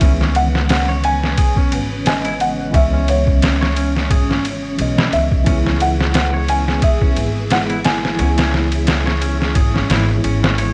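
A brooding, dark trip hop excerpt at 88 BPM in C# minor opens all at once with a gritty, pitched-down sampler drum kit thumping up front, woody pizzicato upright bass, a soft felt-muted upright piano melody trailing tape echo until 10.2 seconds, a reedy electric piano with tremolo and 12-bit grit, full-bodied sawtooth string-machine cellos sustaining chords in the background, and twangy, fingered electric guitar arpeggios, all shifting from C#m7 to E in a lightly reverberant, cassette-worn home recording.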